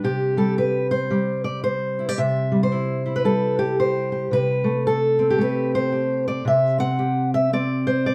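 A moderate studio reverb gives a roomy, live-in-one-room sound to this peaceful, pastoral folk excerpt, with a lone fingerpicked steel-string acoustic guitar sitting up front. The guitar's old strings give it a dark, woody tone as it plays alone with a gentle swing for the full 8.1 seconds, ranging from C3 to F#5. The harmony rests on C before shifting to Am7/C at 4.3 seconds.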